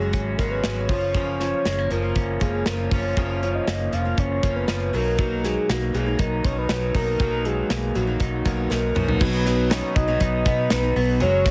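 Heavily compressed with a radio-like sheen and light small-room reverb, this bright, breezy indie pop excerpt moves at 119 BPM in a straight 4/4, drifting from C#sus4 through F#maj7 and Bmaj7 before settling on B at 9.2 seconds. A soft, full-bodied synth lead built from sine and triangle tones with a sub octave carries the melody, colored by chorus, phaser, slapback echo and vibrato, while a shimmering, octave-doubled twelve-string acoustic guitar supplies picked accompaniment and an electric guitar through a small old amp adds slightly broken-up, lo-fi arpeggios. Underneath, a dark, foam-muted fingered bass joins an airy, polished drum kit with a tight kick and medium-tuned snare, which enters at 0.1 seconds and plays a fill from 8.7 to 9.2 seconds.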